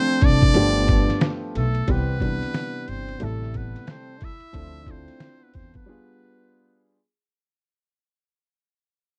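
Cool and smooth, this jazz-hop excerpt moves at 90 BPM with a swung 16th feel, as a buzzy, breathy muted trumpet carries the melody over a mellow trombone second line, both with light vibrato. A woody upright piano plays the Dm7, G9, Cmaj7 and Am7 changes, a dark pizzicato upright bass sits underneath, and a muffled, compressed, pitched-down sampler-style drum kit with a thumpy kick, medium-tuned snare, hi-hat and ride drives the groove. The dry, close 1970s-style sound fades out throughout, and the bass and drums drop away for a break at 5.9 seconds on a G7b9, leaving the horns and piano.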